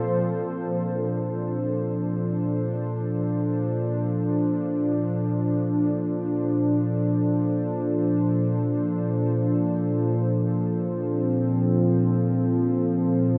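Ambient excerpt in free time and Bb major, peaceful and luminous, where a smooth, detuned sawtooth analog pad with chorus sits up front, fading in across the full 13.4 seconds on a sustained Bbmaj7 chord with soft attack and long release, bathed in a huge, wet reverb with a cassette tape character.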